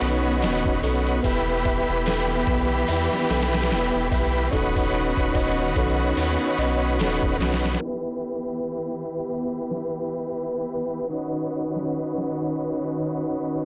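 A smoky, brooding trip hop fragment opens with a smooth, clean tonewheel organ up front, its chorus vibrato, key click and tape echo set over a lush, distant bowed string section and a delicate, slightly out-of-tune music box tinkling arpeggios in the background. Beneath them sit a deep, round sine sub bass and a muffled, pitched-down sampler-style drum kit with a thumpy kick and swung sixteenths, while the recording itself sounds blown-out and overdriven, with light reverb. At 7.8 seconds the music box and sub bass drop away, and a filter sweep runs as the organ, strings and drums carry on until the cut at 13.7 seconds.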